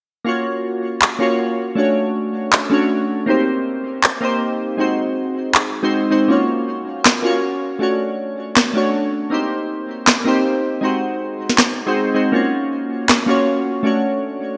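Future bass in Gb lydian at 159 BPM, felt in a half-time 4/4 groove, with a playful, lush mood in this short cut from a longer piece. Glassy digital keys carry the accompaniment from 0.2 s to the end, their sine-like tone bright and up front, with a fast attack, a decaying tail and a filter sweep, coloured by chorus, phaser and tape echo. Electronic handclaps and a sharp snare drum enter at 1.0 s and play until 13.2 s, sitting up front with a tape-warm, produced edge and studio reverb. The harmony cycles through Gbmaj7, Dmaj7, Cm7 and Ab7, returning to Gbmaj7 and Dmaj7 at the close. A moderate hall reverb with a 1.8-second decay gives the whole a spacious, lush sheen.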